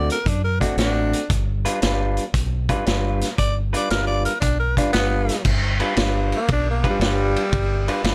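A growling, raspy tenor saxophone leads this gritty, swaggering electric blues shuffle, its clear jazz-style tone colored by light vibrato and scooped notes before it moves into a solo at 5.5 seconds. Underneath, an electric guitar through a small old amp plays a fingered riff with a slightly broken-up, compressed, lo-fi character. A deep dub fingered electric bass sits round and punchy, with a dark tone. A vintage acoustic drum kit comes in at 0.1 seconds, its saturated sound marked by dark cymbals, a medium-tuned snare, a tight kick and a rolled-off top. At 116 BPM in a swung 4/4, the short excerpt from a longer piece moves from D7 to G7 in G mixolydian, with every part up front in a dry, close-sounding space.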